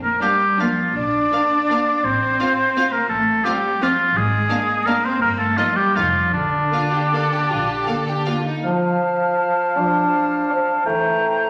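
A rubato waltz in three sweeps along with elegant grace in this orchestral ballroom excerpt, where an up-front oboe carries a second line throughout over a lush string body: intense violins hold the melody in the background, a second distant violin section and focused violas fill in, and smooth cellos and a soft-attack double bass section anchor the bass. At 8.6 s the strings drop away and the woodwinds take over, with an airy flute, a very quiet clarinet and a roomy bassoon joined by sustained French horn chords. A recital hall reverb and vinyl crackle give the sound an aged, spacious glow.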